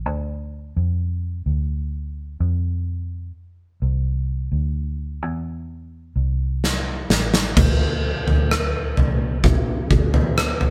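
Heard as a live band in a moderately reverberant stone room, this hopeful, tender pop ballad excerpt at a slow 64 BPM in 4/4 opens with a dark, round, foam-muted vintage fingered electric bass sitting up front, before a huge arena drum kit with bright cymbals, a medium-tuned snare and a punchy kick enters at 6.6 seconds with a fill that leads into a new section at 7.6 seconds.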